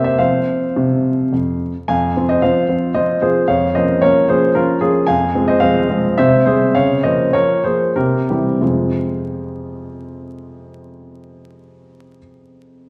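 In a rubato 3/4 that moves between 88 and 116 BPM and slows from 4.3 to 8.6 seconds, this dramatic, elegant classical-period piano sonatina in F minor, cut from a longer piece, features a clear, natural, up-front baby grand piano playing solo from F2 to Ab5, with chords moving from F minor through C7 and back to F minor at 8.6 seconds, set in a wet recital hall heard from further back in the room under vinyl crackle.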